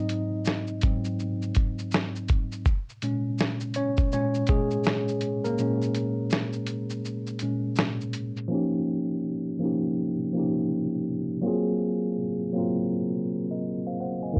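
A worn, slightly out-of-tune tine electric piano leads this melancholic, hazy lo-fi hip hop excerpt, lightly overdriven and sounding as if played through built-in speakers, placed up front. It carries a solo over Ab7 and Bbm7 chords at a relaxed 82 BPM in 4/4, with a swing on the sixteenths. A dusty soul sampler-style drum kit sits close beside it, gritty and compressed with a tape-warm character, built from a thumpy kick, a medium-tuned snare, hi-hat and shaker. The drums drop out at 8.5 seconds, when a filter sweep takes over the passage as the harmony moves to Eb9 and Ab13, and they return at 14.4 seconds. The whole recording carries the warble and pitch drift of old cassette tape, a low-pass filter and a moderate studio reverb.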